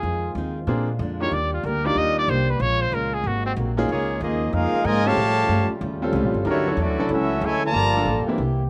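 Big band swing at 187 BPM, energetic and brassy, opening with a scooped, lightly vibrato solo trumpet over a woody pizzicato upright bass, a boxy fingerpicked archtop guitar with slapback echo, sustained chords from a trombone section in the background, and a clear grand piano entering at 0.7 seconds. At 3.9 seconds a tight, smooth-topped trumpet section takes over the melody up front, while a second close-miked trombone section adds a supporting line with its own slapback echo. The sound is dry and open-air with little reverb, and this short fragment is cut from a longer piece.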